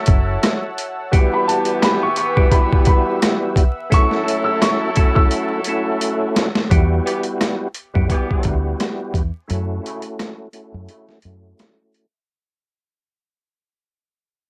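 Boom-bap hip-hop with a reflective, gritty mood, this excerpt rides a compressed, pitched-down sampler-style drum kit, overdriven and up front with a thumpy kick and high-tuned snare, alongside a full tonewheel organ with percussive third-harmonic attack and chorus vibrato. A woody, vintage upright piano melody with short sustain enters at 1.3 seconds over a detuned sawtooth pad in the background and tight, distant jazz-style horn stabs touched with tape echo. A round, punchy, foam-muted dub bass takes hold at 6.7 seconds as the pad stops and a filter sweep carries the fade-out, while light reverb and vinyl crackle give the whole piece a homemade cassette character.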